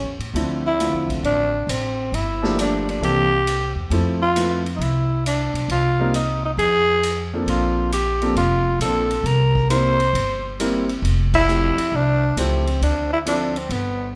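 Swinging in 4/4 with an eighth-note lilt, this short cut from a longer small-group jazz piece has a sophisticated, warm mood rooted in swing and bop. A growling tenor saxophone carries the melody up front, its breathy subtone, scooped notes and gritty rasp softened by a mellow vibrato and a smooth top. An upright bass plucks woody, steel-strung lines close to the listener, while a baby grand piano fills in natural-sounding chords underneath, moving through changes such as Dm9, Gm9, C13 and Fmaj7. The drum kit sits distant and roomy, with dark cymbals, a medium-tuned snare and a punchy kick. The whole group sounds as if captured in a church or concert hall with moderate recital-hall reverb, and the band hits a shared accent at 11.3 seconds before the passage comes back around to Dm9.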